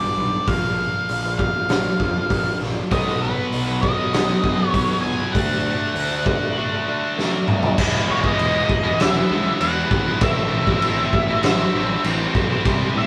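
A straight 4/4 pulse at 99 BPM drives this bittersweet, cathartic slice of quiet-loud alternative rock, cut from a longer piece and captured as a rough rehearsal-room recording with light reverb. From the start, a dark octave-fuzz lead guitar carries the melody between B4 and G#5. Beneath it, a twangy, slightly broken-up guitar through a small old amp picks arpeggios until 7.8 s, while a sludgy overdriven guitar riff and a growly fuzz bass sit in the background. The raw garage drum kit enters at 0.5 s, up front with a fat snare, a punchy kick and a rolled-off top in a bright stone room, and it plays a fill just before the second section. A heavy high-gain guitar joins the riffing at 2.9 s, thickening the sound as the chords move from A# through B and D to E and finally Am.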